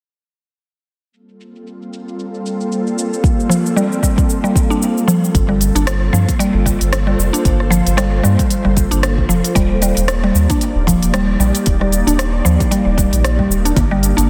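A swung 16th-note groove at 114 BPM in 4/4 opens at 1.1 seconds with a low-pass-filtered deep house kit of congas, smooth hats, rim click and shaker, setting an earthy, meditative organic downtempo mood in G minor. From 1.6 seconds an ethereal, airy pad holds sustained chords moving from Gm11 to Ebmaj7, colored by ensemble chorus, phaser, built-in reverb and sidechain pumping. A layered electronic kick arrives at 3.2 seconds, and a woody, mallet-like FM pluck spins mellow arpeggios through chorus, phaser and tape echo from 3.5 seconds. A round, dark analog bass sits up front from 5.3 seconds, and the dense, heavily limited mix carries light reverb in this section cut from a longer piece.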